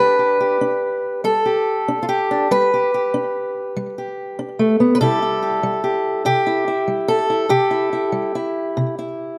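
A fingerpicked acoustic archtop guitar plays alone from the first moment, setting a peaceful, nostalgic folk mood in a slow, rubato 6/8. Its boxy, up-front tone carries a slapback echo and audible finger squeak, and the harmony moves from Gadd9 to C at 5.0 seconds. Close, detailed microphones and light reverb frame this short excerpt, cut from a longer piece.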